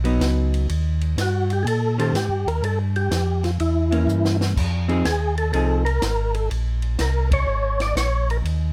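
A close, detailed recording with light reverb places this brief soul jazz organ trio excerpt in an intimate space, its mood greasy and bluesy at 124 BPM in 4/4 with a swung eighth-note feel. A mellow tonewheel organ carries the bass line from the start, round and up front with audible key click and a slow rotary speaker, while a vintage hollow-body jazz guitar adds dark, clean, picked accompaniment chords until about 5.8 seconds. A compact cocktail drum kit sits lower in the mix, dry and natural with dark cymbals, a high-tuned snare and a tight kick, and it plays a short fill around 4.1 seconds. From 1.2 seconds a second tonewheel organ takes the melody, its percussive second-harmonic attack colored by chorus vibrato and a fast-spinning rotary speaker. The harmony moves from a rootless Abm7 through Eb, Fadd9, Edim7 and Fm7 to Bbsus2, with the band hitting an accent together at 7.2 seconds before the fragment breaks off.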